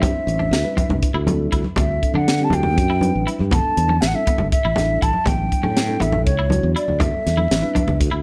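A hollow, pure-toned silver concert flute carries the melody up front in this funky, bright electric jazz fusion passage, its tongued, close-miked notes touched with vibrato and a tape echo. Beneath it, a growly fretless electric bass sits equally forward, while a crisp drum kit with a high-tuned snare and tight kick gives the 7/8 groove an airy, polished studio sound. Congas add a ringing, close and dry layer played with soft hands, and a clean electric guitar punctuates with twangy, compressed picked stabs under a subtle chorus. A mellow tine electric piano supplies softer accompaniment through a phaser, moving from D9sus4 to A9sus4 at 3.5 seconds before slipping in a short fill at 8.0 seconds. Light reverb surrounds this brief excerpt, cut from a longer piece.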